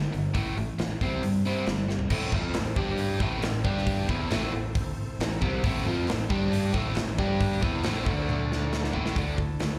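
Brooding and driving, this classic rock excerpt runs at 136 BPM in A minor with a straight 4/4 feel, heard as a live gig through the venue's PA with club reverb. A biting, double-tracked overdriven guitar sits up front with its riff and a slapback echo, while a growly fuzz bass, direct and amped, rumbles beneath it. A big rock drum kit with bright cymbals, a punchy kick and a medium-tuned snare fills out the room, with drum fills at 1.9 seconds and again near the end. From 2.1 seconds a very quiet, reedy tonewheel organ holds chords with key click and slow rotary speaker, joined by distant, hollow group handclaps, as the harmony moves between Am and G5. In the final moments a woody, boxy archtop acoustic guitar with old strings is picked in the background, landing on Dadd9 at 9.2 seconds.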